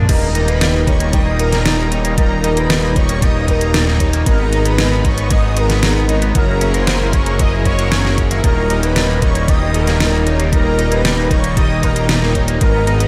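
A straight 4/4 synthwave groove at 115 BPM, driving and nocturnal, sets an overdriven knocking electronic kick and a pop kit with deep snare, hi-hat and crash under a fat, up-front detuned sawtooth bass and a smooth pumping pad, while a picked, twangy clean electric guitar arpeggiates through tape echo, a mellow expressive synth lead carries the melody with vibrato, nasal brassy synth stabs punctuate, and very quiet shimmering string-machine violins add a high second line, all moving from D# through G#m and F#7 back to D# in a dreamy mix soaked in huge ambient reverb, in this excerpt cut from a longer piece.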